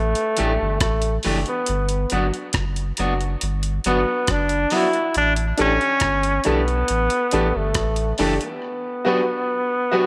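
Roots reggae at a laid-back 69 BPM in 4/4, this short, warm-toned cut from a longer piece sits in A mixolydian and moves between A7sus4 and Gmaj7. A brilliant, punchy trombone carries the melody up front from the start, its vintage pop-style solo colored by vibrato and trailed by dub echo. Beneath it a deep, round sine sub bass holds a mellow, sustained low end until 8.4 seconds, while a dusty, sampler-style drum kit with a gritty, thumpy kick, hi-hat and rim click arrives at 0.2 seconds, compressed and washed in tape echo. A dark electric guitar at the edge of break-up adds picked accompaniment through spring reverb and dub echo. At 5.6 seconds a smooth, vintage grand piano joins with stabs, and the whole mix sits in light digital ambience.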